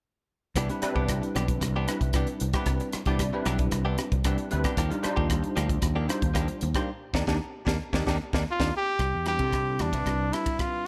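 Bright and funky, this electric jazz fusion excerpt runs at 114 BPM in a straight 4/4 in C major and is cut from a longer piece. From 0.6 s a crisp acoustic drum kit sits up front in a small, pumping room, its tight kick, high-tuned snare, hi-hat, ride, rim click and bright cymbals all coloured by a gritty saturation. Beneath it, a fretless electric bass brings a warm, amped low end, while a bell-like tine electric piano with ensemble chorus carries the accompaniment. A clean, compressed electric guitar, picked and recorded direct, adds stabs through a lush chorus as the harmony moves from Cmaj9 to Ebmaj9 and back. The band hits an accent at 6.9 s, and at 8.5 s a mellow trumpet takes the solo up front, with scooped notes, a smooth top, a forceful, punchy jazz delivery and a slapback echo, all set in light reverb and studio ambience.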